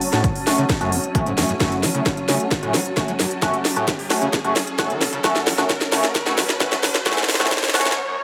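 This is a brief excerpt of driving peak-time techno, hypnotic and intense, and from the first moment a swarming, detuned drone sits tense in the background beneath a blurred granular cloud pad, both carrying built-in reverb. A layered, overdriven drum kit plays up front throughout as a drum fill, with a cracking snare and smooth hats that pump against the sidechain. A screaming distorted acid line arrives almost at once with a squelchy, resonant sawtooth edge, 12-bit sampler grit, subtle chorus and delay, while a sync-sweep polysynth fires nasal, detuned stabs with a moving notch, chorus and delay. A punchy analog kick joins at 0.2 seconds, and a very quiet riser creeps in just after. The whole passage is a build-up on F# minor with filter sweeps on the acid bass and polysynth, set in a stone-like room with digital ambience, and it breaks off at 8.0 seconds.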